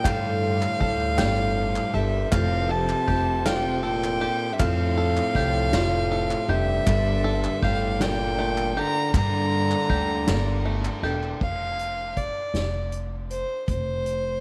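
In a slow, straight 6/8 at 53 BPM in F major, this uplifting, anthemic indie folk excerpt builds around a dark, woody fiddle melody with light vibrato up front, joined by a mellow trombone second line, bright picked steel-string guitar, twangy fingerpicked banjo arpeggios, crisp background group handclaps and a thumpy pizzicato upright bass, over a distant, roomy soft-mallet drum kit with a punchy kick, before the trombone drops out at 11.0 s and the guitar, banjo and claps fall away around 11.4 s, leaving fiddle, bass and drums on an open F5 chord in light reverb.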